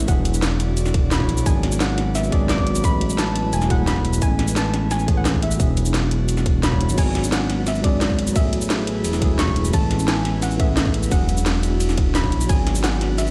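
Lush and soulful, this liquid drum and bass passage cut from a longer piece moves at 174 BPM in a straight 4/4, tuned to A4 = 436 Hz, with a cracking snare, metallic hats, ride, crash and shaker over a tight electronic kick, both re-recorded in a small room, while a smooth, nasal synth bass with vibrato sits up front as the harmony cycles through E9, G#m7b5, F#m11/A and Amaj9. A soft, round pluck carries the melody from D5 to D6 with chorus, digital delay and a filter sweep. A worn, slightly out-of-tune tine electric piano with delay and a breathy, detuned pad with chorus and sidechain pumping sit in the background, and the whole mix plays through a big sound system in a bare room with large studio reverb.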